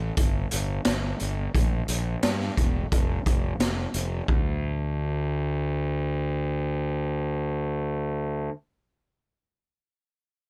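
A straight, steady four-beat pulse drives this brooding classic rock fragment, which is cut from a longer piece. A fingered electric bass with overdrive and fuzz sits up front from the very start, its tone round and punchy as it works through the low register. A raw garage drum kit joins at 0.2 seconds with hi-hat, boomy kick and a medium-tuned snare, sounding saturated and gritty in a small, pumping room with a rolled-off top. The kit drops out at 4.4 seconds, just as the music moves into a new section, leaving the fuzzy bass to carry the driving mood alone until 8.5 seconds. The sound is dry and close, with little reverb around the parts.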